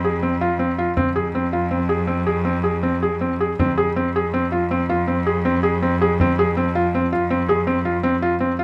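Close, detailed microphones and light reverb frame this restless, hypnotic fragment of contemporary chamber music in 7/4 at 162 BPM in F minor, where an intimate felt-muted upright piano with audible action noise plays arpeggios over a biting, nasal cello holding a bowed bass with vibrato, while a soft-handed frame drum sits in the background from 0.4 seconds.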